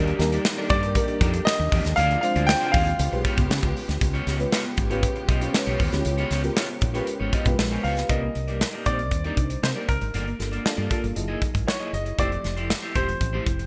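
A clear baby grand piano carries the melody in this slick, bittersweet excerpt of polished 1980s jazz-funk pop, entering at 0.7 seconds and returning at 7.8 seconds with present, short-sustained phrases. Underneath, an FM electric piano with a soft pad layer supplies dreamy accompaniment, its fast-attack, decaying tone coloured by phaser and lush chorus. A dark, slightly broken-up electric guitar plays a picked riff with subtle chorus, while a woody fretless bass adds a round, hollow-bodied low end. An airy modern studio drum kit sits up front at a straight 118 BPM in 4/4, with a punchy kick, medium-tuned snare and hi-hat. A rich studio string section holds bowed, vibrato-laden chords in the background until 8.1 seconds, as the harmony moves from Ebmaj7 through Cm9 and F#13 to Fmaj9 under bright digital production and light reverb.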